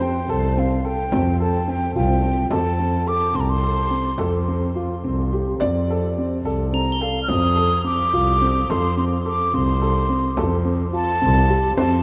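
In a straight 11/8 at 214 BPM counted in eighths, this shimmering, hopeful piece of contemporary chamber music in F major, cut from a longer work, sets a breathy, hollow concert flute melody up front over a pure, bowed double bass, dark, boxy grand piano arpeggios with long sustain and a felt-muted upright piano's intimate second line in the background, while a deep, very quiet frame drum enters at 0.6 s and bell-like crotales ring from 6.7 to 8.7 s, the whole ensemble heard within a vast, echoing space.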